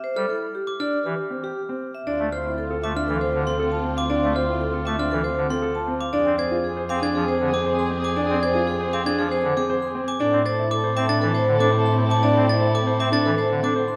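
Hard-mallet vibraphone rings out a metallic melody with a slow motor vibrato over a clear, polished grand piano's arpeggios, bright, sparkling glockenspiel arpeggios and a soft-reed pipe organ with an oboe stop and baroque chiff in this meditative yet urgent minimalist classical pattern piece at 118 BPM in 4/4, cut from a longer work, joined at 2.1 s by a rich bowed double bass, a lush violin section and a distant, lightly vibrato soprano saxophone second line as the chords move through Dm7, Fm and Am inside a wet scoring-stage reverb.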